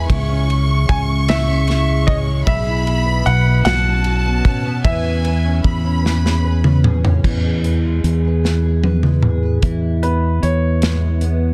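A romantic, heartfelt pop ballad in E major at 50 BPM in a straight six-eight, opening at once with a clear, polished baby grand piano carrying the melody over a lush, bowed violin section with vibrato, a woody, fingerpicked, double-tracked steel-string acoustic guitar and a round, up-front fingered electric bass. A smooth studio drum kit with a tight kick and soft clipping on the snare plays a fill at 6.0 seconds, the violins stop at 6.8 seconds, and the piano returns at 10.0 seconds, over chords moving from C#m through E/B, Bsus2 and E6 to E. The sound is dry, dense and heavily limited, and the recording is cut from a longer piece.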